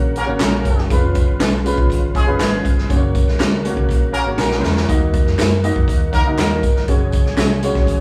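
A woody upright piano, a thick, gritty overdriven tonewheel organ with slow rotary speaker and chorus vibrato, and a dark, round hollow-body electric bass open this uplifting, uptempo 1960s-style soul excerpt at 120 BPM, moving through Gb, Db7/F, Ebm and Gbsus2 in a live stone-room sound. From 0.2 s a punchy, up-front swinging big-band drum kit, close and dry tambourine and handclaps, and a mellow, distant horn section in tight octave doubling with vibrato join in, and a clean, compressed direct-recorded electric guitar adds background stabs from 0.4 s. A drum fill runs from 4.4 to 4.9 s, and the horns drop out at 6.9 s.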